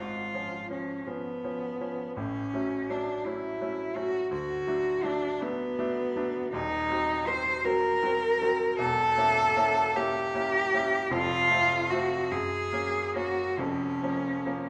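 A slow, rubato 6/8 lilt of 45-58 BPM in dotted quarters carries this melancholic, yearning romantic classical excerpt, where a rich, smooth bowed cello sings the melody with even vibrato over a brilliant, polished grand piano accompaniment of short sustain, both up front in a wet recital hall, as the harmony drifts through shifting chords from C#7/G# to a closing Bbm/F.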